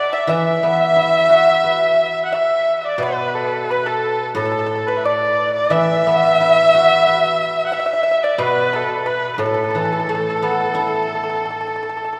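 A rich, up-front erhu carries the graceful, pastoral melody with vibrato and smooth portamento, while a second, earthy and biting erhu line sits in the background, a bright, percussive pipa adds a very quiet second line with fingerpicks, and a ringing, silvery guzheng supplies accompaniment, in this traditional Chinese chamber piece at 89 BPM in an A zhi mode, cut from a longer work and bathed in a long church reverb.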